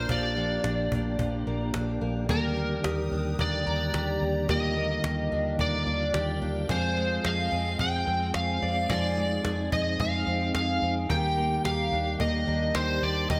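An overdriven slide guitar sings an up-front melody through analog chorus and delay over a soft, flute-like tonewheel organ with key click and chorus vibrato, a dark, boxy, octave-doubled twelve-string acoustic guitar fingerpicking arpeggios, a round, foam-muted electric bass and a dreamy FM bell shimmering in the background, while a woody cajon with hard hands joins at 0.1 seconds in this floating, ethereal dream pop cut at 109 BPM in Eb major, moving from Bb to Ebmaj7 and Fm with bright 1980s-style digital production and a lush hall reverb.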